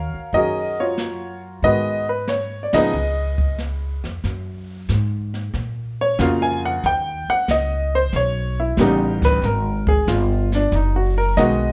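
A warm upright piano leads this moody, late-night jazz trio fragment, its woody, present tone and short sustain sitting up front as it carries the melody from the first moment and takes a solo from 4.2 seconds to the close. Beneath it, a pizzicato upright bass with steel strings gives a dark, growly low end, also close and forward in the sound. A jazz brush drum kit enters at 0.3 seconds, its brushes on the medium-tuned snare joined by hi-hat, ride and a boomy kick, with dark cymbals and an airy, polished studio-room character. The tempo sits at 92 BPM in 4/4 with a swung eighth-note feel, and the whole band hits a brief accent near 2.6 seconds. Harmonies move from Ebm9 through Abm7 and Db9 into Gbmaj7 and a tense Ebaug7, all under light reverb, in a short cut from a longer piece.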